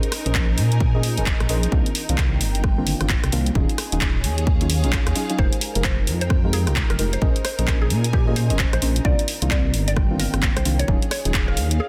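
A swung two-step garage groove at 131 BPM sets a soulful, late-night mood, with a punchy, tape-touched electronic kick and a garage kit of handclaps, hi-hat and rim click driving the cut, while a dark, rumbling detuned saw bass sits up front from 0.3 seconds. Deep, mellow chord stabs with chorus and delay move through minor eleventh chords (Bbm11, Cm11, Ebm11, Fm11) over a lush, bowed string section that pumps softly beneath them. At 5.4 seconds a woody, round mallet-like synth pluck enters with its own chorus and delay, all under a light reverb and a dense, heavily limited modern master.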